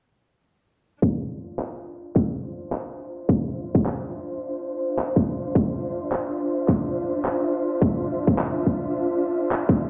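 A tight, layered electronic kick and a clear, lush symphonic string section enter together at 1.0 seconds, opening this swaggering, gritty glitch hop passage cut from a longer piece. The bowed strings sit close and up front with vibrato and a biting, focused ensemble tone; they fade in across the passage while sidechain pumping makes them breathe against the beat. At 1.6 seconds, sampler-style handclaps join, compressed, pitched down and gritty, softened by a low-pass filter and set in studio reverb. The kick, re-recorded in a small room, carries a filter sweep throughout, and the groove swings in common time. A moderate lush hall reverb and the sound of a big system playing in a bare room give the whole passage a roomy, slightly dulled character.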